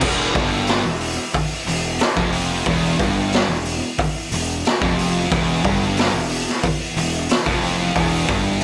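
At 91 BPM in a straight 4/4, a raw garage drum kit sits up front, its punchy kick, medium-tuned snare, hi-hat and crash cymbal coming across saturated and gritty with a rolled-off top in a small room. This is a heavy, sludgy stoner and doom metal excerpt in E phrygian, holding on an E minor chord for its full 8.6 seconds. A growly, overdriven fuzz bass played with the fingers carries the low end with a bright, direct-and-amped edge. Two thick fuzz guitars, dark and picked, play the riff, one in the background and the other very quiet, while a bright, double-tracked high-gain distorted guitar also plays the riff in the background. Above them, a very quiet vintage organ-like ensemble string patch holds soft-attack sustained chords with a moving notch and a chorused shimmer, all set in a noticeable studio ambience.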